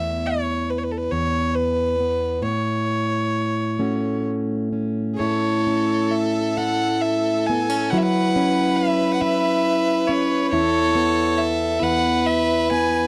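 Tender and wistful, this short cut from a longer Celtic slow air drifts in rubato 6/8 at around 43-47 BPM in A major, with a rich, earthy fiddle carrying the melody up front with light vibrato and a biting, airy bow over a full-bodied, fingerpicked jumbo steel-string guitar, its finger squeaks audible. At 5.1 seconds a second, clear and focused fiddle joins softer in the mix with a line touched by slapback echo. The sound is dry and close, like a 1970s studio recording.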